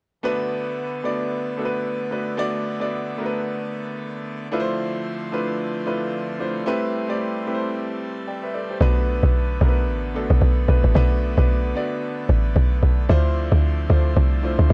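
Soulful and hypnotic, this amapiano excerpt moves at 112 BPM in 4/4 with a swung sixteenth feel in B phrygian, its chords shifting from Bm7 through Dm7 and Am7, then back to Bm7 before a final turn to Dm7. A smooth, vintage-toned concert grand piano sits up front with accompaniment throughout, while a majestic pipe organ on full organ with brilliant mixtures holds sustained chords in a romantic voicing beneath it. At 8.8 seconds a punchy, percussive log drum bass arrives with a fast attack, an FM character and a noisy edge, all caught in a dry, gritty recording.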